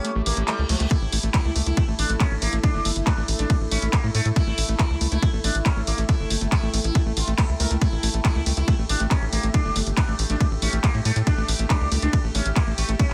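Psychedelic trance with a psychedelic, hypnotic mood, opening on a brief break where a reverse cymbal rises in the background from 0.2 to 0.9 s before a punchy, up-front electronic kick drops in. A tight sawtooth sequencer bass with a plucky filter drives beneath handclaps, hi-hat and ride cymbal from a layered electronic kit. A buzzing, shimmering sitar carries the melody through phaser, gritty 12-bit sampler colour and digital delay, while a squelchy, screaming acid riff with resonant filter sweeps, an overtone-sweeping drone with chorus, and a blurred, evolving granular cloud pad sit further back in a digital ambience.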